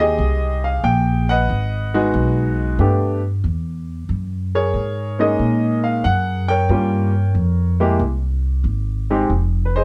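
A dark, lightly reverberant production gives this short excerpt of a jazz piano trio a late-night, swinging atmosphere. A clear concert grand piano carries the melody between C3 and G5, its open tone and deep bass sitting up front. Beside it, an acoustic upright bass, played pizzicato on steel strings, supplies a woody, warm low end between F1 and Bb2, also placed close. Both instruments play together from the start through 9.8 seconds in a 4/4 swing. The harmony opens on a rootless Fm9 and passes through Abm7, Gadd9 and Gb69, then a Gm7b5 and a bare C5, before the chords drop out at 9.3 seconds.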